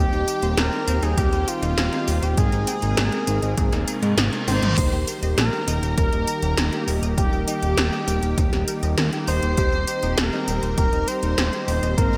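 A fat, saturated analog bass sits up front in this dreamy, uplifting synthwave excerpt, joined by a punchy electronic kick and 80s electronic pad drums with gated snare and toms and metallic hats, while a smooth, expressive synth lead with vibrato carries the melody over a shimmering string machine line, a lush, warbling unison pad with vintage sampler grit and sidechain pumping, very quiet analog pluck arpeggios, dark mellow synth brass stabs, and a reverse cymbal at 3.8 seconds leading into a drum fill at 4.5 seconds, framed by bright 1980s-style digital production and light reverb.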